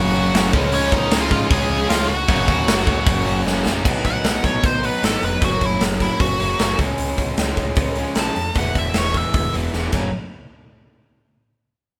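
Punk rock at 153 BPM in F# major, rebellious and energetic, with a punchy, up-front acoustic drum kit in a bright stone room driving three background rhythm guitars (one distorted, one overdriven, and a double-tracked high-gain part that drops out at 3.8 seconds) over a growling, amped picked bass, while a biting lead guitar carries the melody and takes a solo from 3.8 to 10.1 seconds, the band heard playing live in one room with light reverb.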